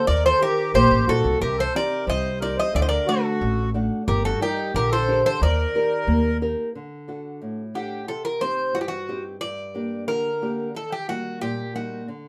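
Greek folk from a bouzouki band, brooding and moody, moving at 90 BPM in a straight 2/4 over a harmony that circles through Eb, Cm, D and Gm. The picked, metallic bouzouki carries the melody up front, its double strings partly octave-doubled, while a reedy, close-miked accordion with slow beating plays a full, dry second line and a woody pizzicato upright bass anchors the low end. Both accordion and bass drop out around 6.5 seconds, leaving the bouzouki and a small, fingerpicked nylon-string guitar accompaniment to carry the second section in a modest small-room ambience.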